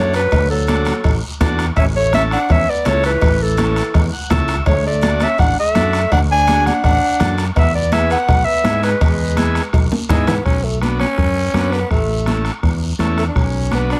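An up-front, classical-style clarinet carries the melody of this sunny, danceable cumbia excerpt until 9.7 s, over a gritty tenor saxophone second line that turns into a growling solo from 10.5 s, buzzy vintage combo organ with a short fill, a punchy fingered electric bass, a distant soft-beater bombo, raspy guiro, very quiet ringing cowbell and timbales that stop at 10.4 s, and damped, high-tuned congas in the background, captured with close, detailed microphones and light reverb.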